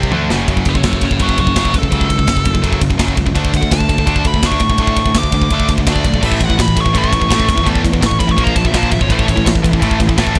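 The nasal lead guitar, voiced through a parked wah and overdriven, takes a solo that runs from 0.7 to 9.5 seconds, its melody ranging high above the band in this aggressive, heavy metal excerpt cut from a longer piece. Beneath it, a tight, bright distorted rhythm guitar plays a picked riff throughout, joined by a high-gain guitar set in the background that appears briefly at the start and returns at 6.2 seconds. A growly, fuzz-laden electric bass, direct and amped, holds down the low end with overdriven grit. The polished acoustic drum kit sits up front with a tight kick, medium-tuned snare, toms, and bright ride and crash cymbals in an airy, big room, opening with a quick fill before the solo begins. The harmony moves from F#m through D5 and A to A#5 before settling back on A, and the overall mix is dry with little reverb.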